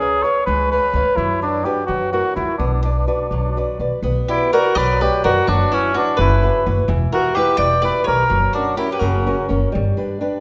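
A wet scoring-stage reverb surrounds this wistful, romantic Italian serenade, a short passage cut from a longer piece, moving freely in 6/8 at 84 BPM in B minor, with a turn to B harmonic minor at 4.0 s. Up front, a dark cor anglais sings the solo melody in a classical style, with light vibrato and a smooth top, over a fingerpicked flamenco guitar with fresh strings and a growly, thumpy pizzicato upright bass. At 4.3 s a picked, woody mandolin with double strings adds a second line until 9.5 s.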